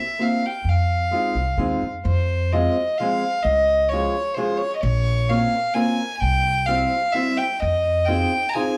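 Heard from further back in a small, reverberant room, this short cut from a longer musette waltz in F minor turns at 130 BPM in 3/4 with a whirling, charming air. A rich, pure violin carries the melody from 0.0 seconds, bowed sul tasto with a soft attack and a floating plate-reverb sheen. A dark, boxy fingerpicked parlour steel-string guitar joins at 0.2 seconds, and a woody, thumpy pizzicato upright bass enters at 0.6 seconds, both beneath the violin as the harmony moves through Fm, Db, Bbmadd9 and C before settling on Fm7.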